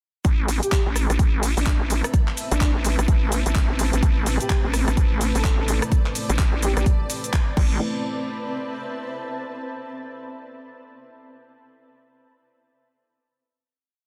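A dense, heavily limited mix with light reverb frames this short, aggressive bass house piece in A minor at 127 BPM, where swung 16ths push a punchy, tape-warm four-on-the-floor kick up front and a layered house kit of shaker, claps, hi-hats, rim clicks and crash. A nasal, saturated vowel-sweep wobble bass dominates the drop with modulated phrases of changing wobble speed, while a moody, detuned analog pad holds an Amadd9 chord in the background under sidechain pumping, and a breathy, flute-like lead adds short phrases coloured by tremolo, cassette tape and dub echo. A bright, blurred granular cloud pad drifts in at 1.6 s and rings alone on the final chord until 9.7 s.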